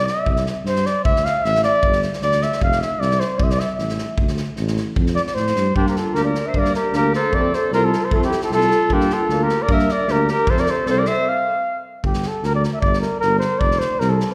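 A mellow, up-front flugelhorn opens this exuberant, wild Balkan brass band excerpt over a dark tuba with light vibrato and a natural drum kit with a punchy kick and snare, and at 5.8 seconds a bright clarinet second line arrives with a clear, close-miked trombone and a vibrato-tinged euphonium set in the background, before a brief stop at 11.3 seconds, with a recital-hall reverb lending the band a spacious, churchlike glow.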